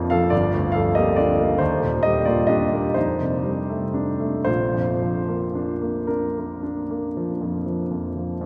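A cathedral's long, wet reverb, ringing for about 4.7 seconds, surrounds a baby grand piano that sits up front with a warm, natural tone. This is a brief fragment of a romantic classical nocturne for solo piano, dreamy and serene, with the piano playing alone for the full 8.5 seconds. The pulse moves slowly in 9/8, at roughly 36 to 47 beats per minute counted in dotted quarters, and the rubato lets the time bend freely. The piano spans from G1 up to Bb5, reaching from deep bass to the upper treble. The harmony drifts from Gm7 through Ebmaj7 and F13 before settling on Bb at 4.5 seconds, giving the passage a sense of arrival.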